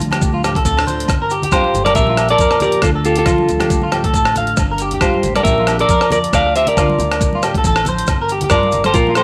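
Highlife guitar band at 138 BPM with a light sixteenth-note swing, sunny and warm in mood, cut from a longer piece and moving through D minor, B-flat and G minor chords. A gritty, compressed sampler-style drum kit with a thumpy kick, hi-hat and rim click plays alongside a woody pizzicato upright bass, while a bright fingerpicked dreadnought acoustic guitar, bright congas, grainy maracas and ringing agogo bells sit in the background. A slightly broken-up electric guitar plays arpeggios bathed in lush chorus and slapback echo, and from 1.5 seconds a clean, picked electric guitar carries the melody up front in a small, lightly reverberant room.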